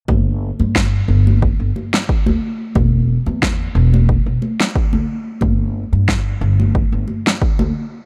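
A dark, warm studio production frames this short slice of relaxed, smooth sunset chillout at 90 BPM in 4/4, with a gentle swing on the sixteenths. A woody, growly pizzicato upright bass on steel strings sits up front beside a punchy, layered electronic kick, while hard-handed congas add a bright, small-room acoustic touch. A fat, produced electronic snare joins at 0.8 seconds, and the groove carries on until about 7.7 seconds, shortly before the excerpt ends at 8.1 seconds.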